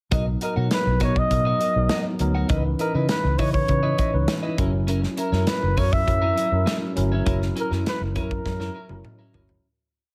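Polished 1980s jazz-funk pop at 101 BPM with a glossy, urban mood, where a vibrato-rich flugelhorn carries a motif-based jazz melody up front over a worn, slightly out-of-tune tine electric piano with overdrive and lush chorus playing syncopated drop2 chords, a clean, compressed guitar picking a crisp sixteenth-note riff, a dark, foam-muted fingered bass playing an agile syncopated line with chromatic approach notes, and a punchy studio drum kit with gated reverb, moving through Bmaj7, C#m9 and F#7 before fading out from 7.3 seconds as drum and electric piano fills close the piece.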